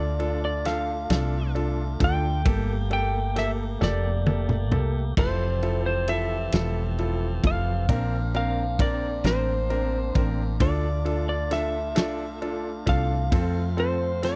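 Romantic and swaying, this six-eight pop ballad moves at a slow 44 BPM in dotted quarters, as a dark, slightly broken-up electric slide guitar carries the melody over a woody, round fretless bass and a full tonewheel organ holding sustained chords with light overdrive, subtle chorus, vibrato and key click. A clear, polished concert grand piano and a loose indie drum kit with a fat snare and punchy kick join at 0.2 seconds, and the drums play a fill from 3.8 to 5.2 seconds. The chords wander from D minor through G minor add9, F major 7 and B-flat add9, return to D minor, and then settle on F, all in a dry, close 1970s-style studio sound, with the drums and bass up front.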